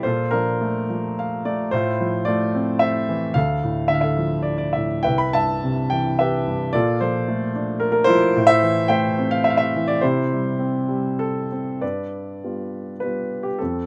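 In a rubato 3/4 at 94-112 BPM, this moody, bittersweet classical excerpt in C major features a clear, polished baby grand piano playing alone from C2 to B5, with a brief fill at 0.9 seconds, moving through chords from Bbmaj7 and Fmaj7/A to Dm and Cmaj7 before a new section arrives on G7 at 11.8 seconds, all captured up close in light reverb.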